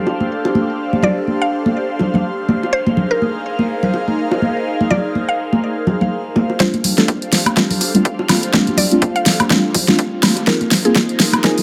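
An airy, breathy pad with chorus, phaser and sidechain pumping opens this smooth, late-night deep house excerpt alongside soft-handed, vintage-toned bongos and congas, and from 1.0 s a woody, round mallet-like pluck carries the melody through chorus and delay over sustained sus chords. At 6.6 s a build-up begins: deep, dark chord stabs with digital delay arrive under a filter sweep, while an overdriven, up-front drum kit with a fat snare, low-pass filtered hi-hats and woodblock plays a fill over a punchy, overdriven electronic kick. A moderate plate reverb gives the swung groove its space.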